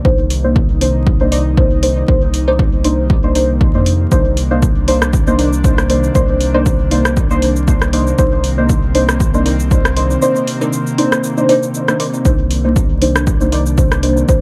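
A tape-warm, up-front electronic kick holds a 118 BPM pulse with a slight 16th-note swing, joined at 0.3 s by a punchy analog drum machine's hi-hat, rim click and shaker trailing dub echo. In this cavernous, nocturnal dub techno cut in C minor, a single Cm9 chord is carried by a deep, nasal chord stab with chorus, phaser, filter sweep and dub echo, and by an airy, breathy pad with ring modulation and a slow attack; both are sidechain-pumped along with a round, soft sub bass. A crisp, warbling wavetable chord stab with a moving notch sits in the background from 1.3 s to 13.6 s, and light reverb and vinyl crackle coat this section of a longer piece.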